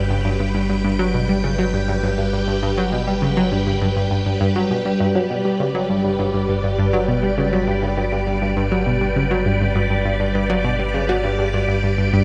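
A straight 4/4 pulse carries this expansive, luminous fragment of sequencer-driven ambient space music, where a nasal, fast-attack analog pluck riff with chorus, phaser and analog delay sits up front over swirling, vintage phased string machine chords with ensemble chorus and shimmer reverb, while a deep, dark round analog bass sustains beneath, set inside a huge, wet ambient space whose reverb hangs for 8.3 seconds.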